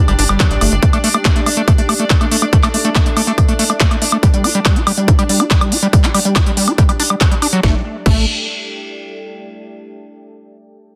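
Driving and hypnotic, this psychedelic trance passage runs on a straight 4/4 pulse and is cut from a longer piece. An up-front electronic kick, heavy and tape-tinged, anchors a techno kit of cracking snare, smooth hi-hats, handclaps, woodblock and crash cymbal, both re-recorded in a small room. A squelchy, gritty acid bass carries the riff with resonant filter sweeps, tape echo and sidechain pumping. A tight, punchy sequencer bass with a wave-folded sawtooth pluck appears only briefly at the start and again from 7.6 s. Above them, a bright, detuned gated texture pulses with chorus and sidechain pumping until 7.6 s. Meanwhile a deep, moody pad with a sub octave fades out over that stretch before lingering to 9.3 s, while the harmony shifts between G5 and A5 in a dense, heavily limited master with little room reverb.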